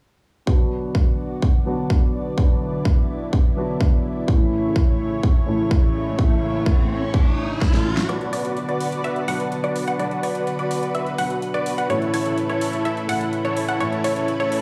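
Festival progressive house at 126 BPM in B minor, emotional and euphoric, moving between Bm and A chords. A dark, mellow grand piano with tape echo and a lush, chorused pad under a filter sweep both pump to the sidechain beneath a punchy, overdriven kick, as an electronic riser builds and a big-room kit enters with a drum fill leading into the build-up at 8.1 seconds. There a huge, detuned supersaw riff with a low-pass filter sweep steps up front, joined by a warbling pluck arpeggio in the background, while the kit drives on with a huge snare and metallic hats, all set in light reverb.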